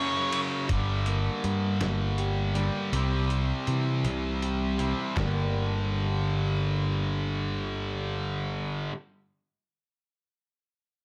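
Angsty and brooding, this short cut of quiet-loud alternative rock in a slow 6/8 opens on a double-tracked, high-gain guitar riff with a brief break before the picked bass, round and punchy, and a dark, clean, fingered electric guitar playing arpeggios with subtle chorus in the background enter at 0.7 seconds. A lo-fi sampler-style drum kit, muffled and pitched down with a thumpy kick, medium-tuned snare, hi-hat, ride, handclaps and overdrive, plays until 5.3 seconds, its kick and snare dropping out from 2.9 seconds as the chords move from Gm to C and back. Light reverb and digital ambience frame the mix, with the distorted riff up front.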